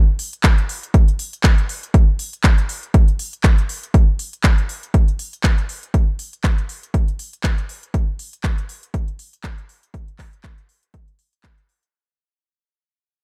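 A crisp house drum kit of handclaps and hi-hats, the hats pumping under sidechain, opens a feel-good, joyful house groove at 120 BPM with a 16th-note swing, joined at 0.4 seconds by a punchy, up-front analog electronic kick drum in a dark, dry production that drops in at the start and fades out from 3.9 seconds.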